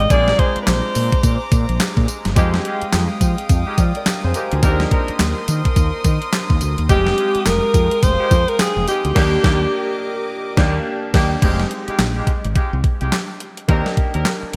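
Swung 16ths at 106 BPM drive this slick, bouncy new jack swing excerpt in F dorian, where a crisp 8-bit drum machine with thumpy kick, fat snare, handclaps, tambourine, hi-hat and crash sits up front beside a round, woody fretless bass, a polished baby grand piano with lush chorus plays throughout, distant bowed strings hold floating chords until 11.4 seconds, a tight vintage horn section adds delayed stabs, and a breathy alto saxophone with scooped notes and vibrato carries the melody briefly at the start and again from 6.9 seconds, the whole mix set in light reverb with bright 1980s-style digital production.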